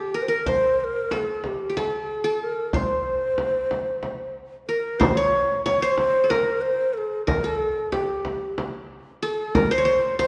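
A breathy, hollow ney carries the festive yet stately melody of this Turkish makam ensemble fragment in 7/8, with a bright-edged, plectrum-plucked qanun tracing a second line in the same register and a deep, large frame drum entering at 0.5 s, all three up front in a moderate concert-hall reverb as the music moves into a new section at 5.0 s.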